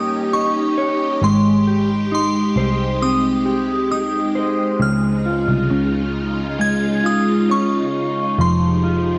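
Up front in this melancholic, ethereal dream pop excerpt, a dark, clean, fingered electric guitar plays arpeggios through analog chorus and delay. Above it, a glassy FM synth bell carries a crystalline, decaying melody with phaser and cassette tape color, and a swirling sawtooth string machine holds warbling chords. A round, foam-muted picked bass sits underneath as the harmony moves from Eb7 to Abmaj7, Dbmaj7 and Fm7, all wrapped in spring reverb on a home cassette recording.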